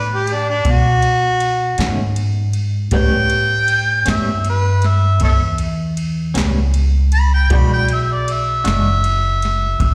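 A mellow harmonica takes a laid-back, swaggering solo over a slow 12/8 blues at 52 BPM, its overdriven, slapback-echoed tone full of tongue slaps and scooped notes, joined from 0.0 seconds by woody, pizzicato upright bass up front and a natural-sounding baby grand piano with short sustain tucked in the background. A soft analog rhythm box with a deep kick and crisp snare enters at 0.3 seconds, and at 1.8 seconds a twangy, compressed electric guitar adds picked tremolo accompaniment through the B9, A9 and E9 changes. This fragment of a longer live performance, tuned to A4 = 435 Hz, is heard through the venue's PA.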